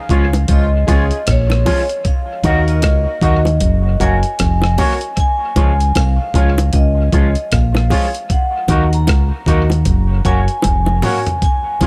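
A round, punchy fingered electric bass sits up front in this laid-back, uplifting roots reggae excerpt at 77 BPM in Db major, where a ringing, airy vibraphone with tape echo carries the melody over a gritty, compressed breakbeat sampler-style kit with a thumpy kick and a drum fill at 10.6 seconds, close, dry, low-tuned bongos, a twangy, chorused electric guitar with an envelope filter, vintage grand piano stabs, and a tight, clear horn section with octave doubling that plays the second line until 3.2 seconds and returns briefly at 11.8 seconds, all in a dry room.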